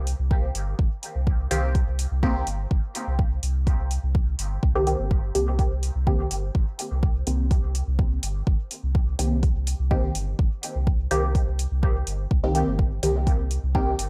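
A round, sine-like sub bass opens this hazy, cavernous dub techno excerpt, with sidechain pumping that makes it breathe against the beat, while a metallic electronic hi-hat ticks in almost at once. A deep, up-front kick drum anchors the steady, straight pulse, its tape-toned weight sitting beneath the mellow, sustained bass. At 1.5 seconds a filtered, detuned sawtooth chord stab arrives, plucked and decaying, with a moving notch, phaser, cassette-tape coloring and dub echo that trails it into the dark. The whole passage rests on a single Cm7 chord, and the stab's evolving, muted character is what gives the groove its sense of drift. The sound is dry and gritty, with hardware saturation adding bite and little room reverb, so the depth comes from the echo itself.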